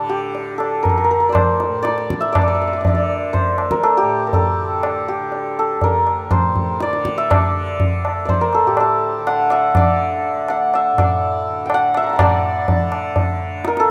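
Devotional and meditative, this short cut from a longer Hindustani classical piece in raga Charukeshi on D moves at 122 BPM in a straight 5/4, with an up-front hammered santur ringing out the melody between G4 and D6 over a softly plucked, buzzing tanpura drone, joined at 0.3 seconds by high-tuned, compressed and saturated tabla, all set in a lush hall reverb within a rough home demo mix that shifts to a new section at 12.2 seconds.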